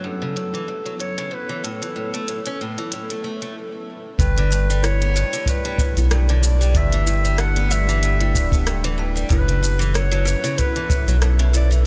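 Over a lightly swung sixteenth-note groove of smooth hi-hat, rim click and shaker, this hopeful folktronica excerpt sets a mellow, distant clarinet melody above boxy arpeggios from a picked archtop guitar with gritty sampler texture and tape echo and a warbling, nostalgic pad in the background, until at 4.2 s a deep, round analog bass sits up front beside a boomy kick while a woody kalimba rings softly behind with delay.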